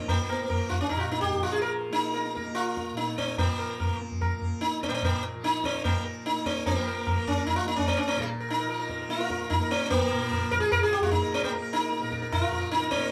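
A bright, plectrum-plucked sitar, up front with shimmering sympathetic strings, opens this meditative, introspective Hindustani classical excerpt over a softly plucked, buzzing tanpura drone, with low-tuned, short-ringing tabla joining at 0.1 seconds as the 147 BPM pulse gradually speeds up, shifting into a new section at 6.7 seconds, all captured live in one room with a wet studio reverb.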